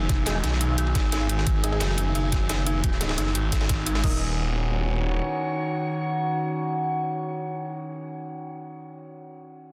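A straight-feel drive anchors this dark, futuristic slice of technical drum and bass, with a knocking, overdriven electronic kick layered against a drum and bass kit of bright hats and crash cymbal, plus a crunchy breakbeat kit whose high-tuned snare and dark ride sit gritty, saturated and rolled-off in the mix. All three drum parts play together until about 4.1 seconds. Beneath them, a snarling distorted saw bass growls up front, aggressive and compressed, with sidechain pumping. A metallic, inharmonic drone holds eerie sustained chords from the outset, its chorus and reverb shaded by a filter sweep through the opening stretch, while a detuned FM synth bell traces arpeggios with tremolo and dub echo before stopping at 4.4 seconds. An orchestra-hit-like synth stab, bold and punchy yet tucked into the background, punctuates the passage with reverb and echo and lingers alone to the end at 8.4 seconds. 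The harmony moves from Abm to Ebm7 under a dense, heavily limited master with light reverb.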